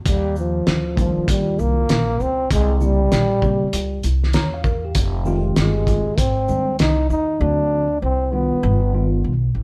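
Cool and smoky, this jazz-hop excerpt in C minor moves at 98 BPM with a swung 16th-note feel, anchored by a woody, thumpy pizzicato upright bass and a cloth-damped drum kit whose fat snare, tight kick, hi-hat and shaker come through muffled and gritty. A breathy, whispered trombone carries the melody up front with light vibrato and a soft attack. Meanwhile a clean tine electric piano voices chords such as Ebmaj9, C7b9 and Fm9 and adds a short fill at 4.0 seconds, all played live in one room with light reverb, before the drums stop at 7.3 seconds and the bass plays on to 9.6 seconds.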